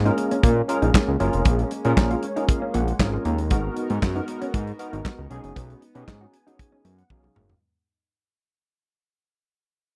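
A straight 4/4 groove at 117 BPM drives this danceable, slick early-eighties boogie funk, cut from a longer piece and fading out across its 7.6 seconds, with an up-front acoustic drum kit of tight kick, medium-tuned snare, hi-hat, toms and handclaps under a fat, sawtooth analog bass with a filter sweep. A bright, barky tine electric piano through a combo amp and ensemble chorus plays accompaniment with fills at 2.0 and 6.1 seconds, while a dark, fingered, compressed electric guitar with lush chorus sits back on a riff beside a shimmering pulse-width pad holding sustained chords. The chords move from A#m7 to G#m9 to B6, the sound is dry and close in a 1970s studio style, and a drum fill closes things at 7.1 seconds.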